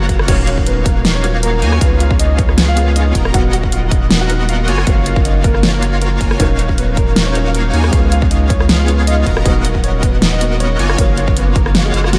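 Future bass at 157 BPM in Eb minor, this emotional, lush excerpt from a longer piece moves in a swung, half-time 4/4 feel through a looping progression of Ebm9, Db7, Bmaj7/D# and Gbmaj7. An intimate grand piano carries the melody, its natural tone and audible action noise softened by subtle chorus and delay, while a big, bright polysynth plays a fat, detuned sawtooth riff with ring-modulated edges, ensemble chorus and a diffuse ambient delay. Beneath them, a saturated sine sub bass sits deep, thick and up front, pumping with the sidechain alongside the other melodic parts. From 0.1 seconds a layered, produced dance kit drives the groove with a huge snare, rim clicks, hi-hat and crash, together with a punchy electronic kick that stops at 11.6 seconds. A felt-muted upright piano enters at 0.3 seconds in the background, mellow, dark and vintage, with analog chorus and ambient delay, all set in a light reverb.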